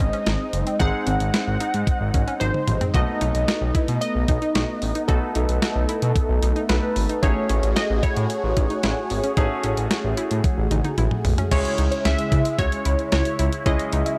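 A straight 4/4 groove from a clean, sampler-style 12-bit drum machine sits up front, with a thumpy kick, medium-tuned snare, hi-hat, toms and crash, and short fills breaking in around 2.4 and 10.4 seconds. This melancholic, nocturnal synth-pop passage is cut from a longer piece. A smooth, saturated synth bass with a moving notch anchors the low end just as prominently, while a punchy, funky polysynth comp carries the melody with detuned sawtooth bite, ring modulation and a filter sweep under chorus. Around it, a phased analog pad holds swirling, evolving chords with a slow attack and long release, and a warm analog pluck traces arpeggios through chorus and analog delay, set back alongside a clear, polished concert grand piano that adds short-sustained accompaniment. At 11.5 seconds, as the harmony settles onto C#m, a soft, dark, wave-folded pluck enters in the background with a gentle second line. 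The whole passage has a gritty hardware character, placed in a digital ambience.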